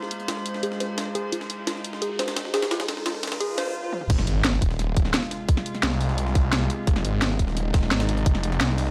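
Aggressive and futuristic, this dark technical drum and bass excerpt opens with an eerie metallic drone, a dusty warbling pluck arpeggio under a filter sweep, a gritty pitched-up breakbeat kit in the background, a cracking up-front drum kit and an electronic riser that build to the drop at 4.1 seconds, where a snarling, growling distorted saw bass and a tight layered kick hit with an impact.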